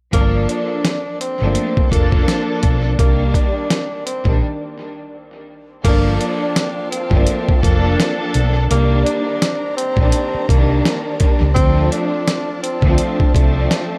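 Reflective yet tough, this boom-bap hip-hop excerpt in G minor moves at 84 BPM with a swung 16th feel, anchored by a gritty, compressed sampler-style drum kit with a thumpy kick and medium-tuned snare, plus a dark, round hollow-body electric bass played with the fingers. A breathy tenor saxophone carries the melody in a subtone jazz style with vibrato, scooped notes and tape echo, while an up-front bowed string section supplies lush, smooth accompaniment with a cassette-tape coloring. A break at 4.4 s leads into the next section, and from 5.9 s a second string ensemble holds expressive sustained chords with portamento in the background, the whole mix soaked in echo-heavy studio reverb.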